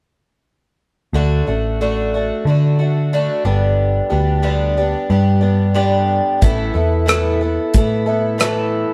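A live band sound fills a moderate stone room, its reverb giving the close, up-front parts a natural ring. This short folk rock and heartland rock passage, cut from a longer piece, moves at 91 BPM in a straight 4/4 in D major, with a jangly, nostalgic mood. A picked twelve-string acoustic guitar carries the accompaniment from 1.1 seconds, its bright, boxy parlour tone shimmering with octave-doubled strings over chords moving from D to G to Asus2. A hollow-body short-scale electric bass, also picked, enters with it, dark, round and amped. A damped 70s drum kit arrives at 6.4 seconds, its dry hi-hat, tight kick and rim click placed up front until 8.6 seconds, shortly before the passage breaks off near 8.9 seconds.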